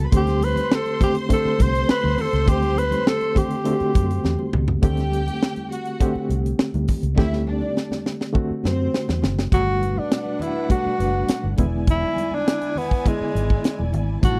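Smooth and lush, this excerpt of 1970s-style soul moves at 102 BPM in a straight 4/4, with a breathy, mellow tenor saxophone carrying the melody up front from 0.2 to 4.5 seconds and returning at 9.5 seconds. Underneath, a barky, reedy electric piano with light overdrive and fast tremolo plays accompaniment, a bowed string section adds a woody second line, and a dark, round muted bass sits beneath a tight funk drum kit with a high-tuned snare and quiet, ringing congas. The recording is dry and close, with drum fills marking the turns and the harmony moving from D7sus4 to Gmaj9 and E7.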